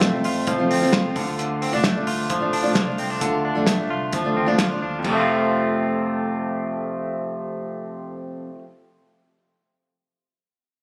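Heard through a phone in a club, this short cut from a longer piece has a compressed, roomy sound with light reverb and the club's ambience around it. It is jangly indie pop with a breezy, youthful mood and a straight four-four feel, moving from F to D minor and returning to F as a new section begins at 5.0 seconds. Up front, a bright, twangy clean electric guitar, recorded direct, plays picked arpeggios through a tape echo. Beside it, a full-bodied dreadnought steel-string acoustic guitar is picked as accompaniment. A cloth-damped, thuddy drum kit with a fat snare, tight kick, hi-hat and crash, with dark cymbals and a rolled-off top, sits near the front until it drops out at 5.2 seconds. A round, foam-muted vintage bass, fingered and amped, stays in the background underneath.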